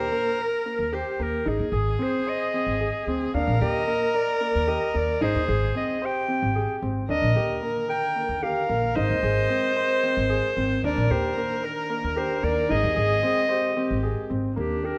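A clear, close-miked clarinet carries the melody up front in classical style, singing over a restless, playful chamber piece in an uneven 7/8 at 224 BPM counted in eighths, with a straight feel. Beside it, a single bowed viola adds a smooth, slightly nasal second line with vibrato, while a polished grand piano with long sustain spins arpeggios underneath. A woody upright bass plucked pizzicato on steel strings sits close and anchors the low end. At 7.1 s a dark French horn section enters in the background with sustained chords, lightly vibrato and smooth on top. The harmony alternates between Eb and Ab, often colored as major sevenths, and the ensemble sits in a moderate concert hall reverb in this passage cut from a longer piece.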